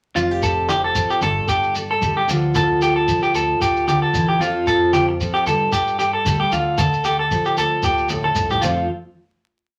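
Highlife guitar band music with a sunny, carefree mood, moving at 113 BPM in 4/4 with a light swing on the sixteenths, in F major. Up front, a clean, compressed electric guitar picks a repeating arpeggio ostinato, while a bright, full-bodied jumbo acoustic guitar supplies syncopated fingerstyle accompaniment underneath. Deeper in the mix, a woody pizzicato upright bass plays a dotted figure, and low-tuned congas with a thick skin and hard hands add a vintage, band-limited pulse beside a grainy, mellow shekere that sits close and dry. The groove cycles through Fadd9, Gsus2 and Dm twice, and a drum fill at 8.1 seconds leads into a final F chord held from 8.6 seconds to the end at 9.8 seconds. The sound carries a studio reverb and a layer of vinyl crackle, giving the short whole piece a gently aged sheen.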